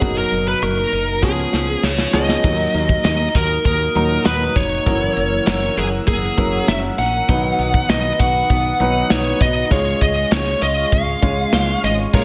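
Nostalgic and romantic, this short excerpt from a longer 1980s-style pop piece moves at 99 BPM in a straight 4/4. A dark, high-gain lead guitar carries the melody up front, its distorted tone trailed by digital delay, while a clear grand piano with audible action noise supplies intimate accompaniment. Behind them, a bright, twangy twelve-string electric guitar plays a compressed riff coloured by ensemble chorus and delay, and a woody fretless bass anchors the low end with a round, hollow tone. The polished drum kit, with a punchy kick, medium-tuned snare, rim clicks, hi-hat and crash, is bathed in gated reverb and plays a fill from 1.2 to 2.4 seconds. At 2.4 seconds a shimmering, evolving pulse-width pad enters in the background with soft-attack sustained chords as the harmony moves from D#m through F#7 and B to C#, all set in a moderate studio room reverb.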